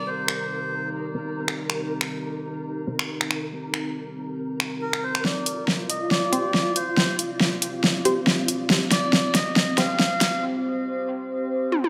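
This heavy, cavernous deep dubstep excerpt in C minor at 139 BPM opens with a brief reedy, breathy melodica phrase over a dark, moody ambient pad with chorus and a faint grainy, flickering granular texture. Moments later an overdriven electronic drum kit arrives up front, its huge snare joined by finger snaps, hi-hat and toms in a swung, half-time feel. Muted, detuned sawtooth chord stabs with phaser and dub echo appear in two stretches. The melodica returns at 4.8 seconds, its nasal tone shaded by a low-pass filter and trailed by dub echo. From 5.2 seconds the passage builds, with filter sweeps on the pad and melodica and a run of drum fills, before a break at 10.4 seconds where the texture and melodica fall away. A lush hall reverb gives the mix a spacious, enveloping depth.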